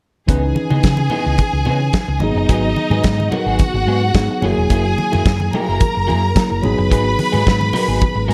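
A danceable, driving disco groove opens at 0.3 s with a soul drum kit up front, its fat snare and tight kick caught in a small room with a rolled-off top, over a round, punchy hollow-body bass played with the fingers. A slightly broken-up electric guitar, picked and compressed through a small old amp with a subtle chorus, shares the accompaniment with a worn tine electric piano, a little out of tune and heard through its built-in speakers. Above them, a lush studio string section carries the second line, bowed with vibrato and a smooth, focused top. Low-tuned congas with a thick, damped skin join in the background at 0.6 s. The harmony moves from C#m9 to G#m7, then F#9 and back to G#m7, under light reverb and studio ambience, in this passage cut from a longer piece.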